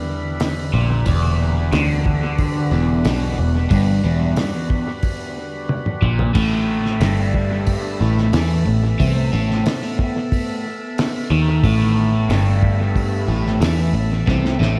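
A crunchy, double-tracked overdriven guitar sits up front in this dark, mysterious psychedelic rock excerpt, picking a low riff through phaser and analog delay from 0.7 seconds. Around it, a cloth-damped, thuddy drum kit sounds muffled and lo-fi, with a fat snare, a tight kick and dark cymbals, its gritty small-room tone fed through analog delay, and it plays fills, the first at 5.7 seconds. A round, foam-muted picked electric bass anchors the bottom at a steady 91 BPM in straight 4/4. Underneath, an overdriven tonewheel organ holds thick sustained chords with key click and percussive third-harmonic attack through a slow rotary speaker, while a very quiet FM drone adds an eerie, metallic, warbling haze. The echo-heavy mix carries light studio reverb, and the harmony moves from Em7 to A5 at 6.4 seconds.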